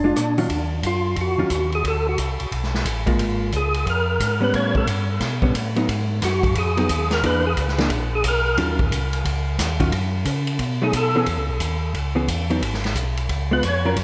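Soaked in a lush hall reverb, this dreamy cut of bluesy, soulful soul jazz organ trio swings at 178 BPM in Eb minor, with a fat, lightly overdriven tonewheel organ playing the melody through a slow rotary speaker, chorus vibrato, key click and diffuse delay until 8.6 seconds, then returning only in brief bursts near 10.8 and 13.5 seconds, while a round, mellow second organ carries the bass, a clean, compressed hollow-body guitar accompanies in a dark tone, and a swinging big-band drum kit adds a boomy kick and dark cymbals.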